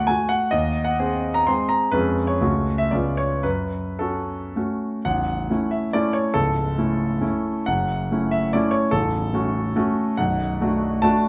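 A clear, up-front concert grand piano plays alone in this nostalgic, wistful romantic dance in triple time, its dotted rhythms and rubato feel carried on a deep bass and smooth, vintage tone, caught by close, detailed microphones in a moderate recital hall, with the music turning from minor to a brighter major at 5.1 seconds in this brief cut from a longer piece.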